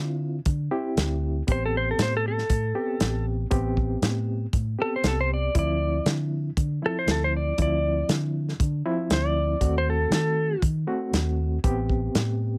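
A straight-eighth soul blues groove at 118 BPM in A minor sets a soulful, mournful tone, carried by a tight, up-front soul drum kit with a medium-tuned snare and a rolled-off top, and a round, punchy, foam-muted fingered electric bass. A gritty, overdriven reed electric piano with fast tremolo comps through a combo amp, while a clean, compressed lap steel guitar played with fingerpicks and slide takes the melody from 1.5 to 10.6 seconds, using volume swells. The chords move from Dm7 to Am7, back to Dm7, through D#dim7 and home to Am7 in a dry, close sound, cut from a longer piece.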